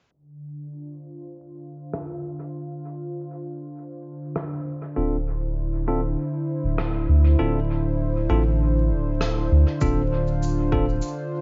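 Ambient dub at 99 BPM in D minor, meditative and spacious, this excerpt opens on a Dm7 chord from a smooth, detuned sawtooth analog pad with chorus and a filter sweep until 9.8 seconds, joined at 1.9 seconds by rim click and cabasa in a big room with dub echo, then at 5.0 seconds by bell-like tine electric piano stabs through a low-pass filter and dub echo alongside a round, up-front sub bass, before a deep electronic kick sits in the background from 9.8 seconds, all under a veil of vinyl crackle.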